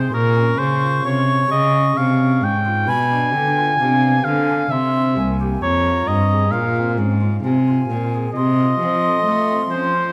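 Flute, oboe, cello and a pipe organ on soft flute stops begin together in this introspective, flowing baroque-style sonata movement, cut from a longer piece and moving in a rubato triple metre. The airy, wooden flute carries the melody with a crisp, straight tone while the oboe's gently vibrato-tinged second line sits up front, and a single bowed cello of rich gut-string, period character anchors the bass close to the listener. The organ's chiffing stops fill out the accompaniment through a moderate concert-hall reverb, as the harmony moves from Bbm through Bdim7 and C7 to Fm, reaching F7/C at 8.3 seconds.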